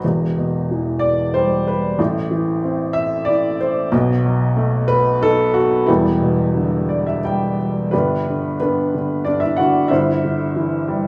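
A woody, boxy upright piano sits up front with intimate action noise and long sustain in this cool, brooding piece of lyrical classical solo piano, unfolding in a rubato 3/4 at 92 BPM and turning from E minor to G major at 7.9 s after a brief fill from 6.5 s, framed by light reverb and studio ambience in a short cut from a longer work.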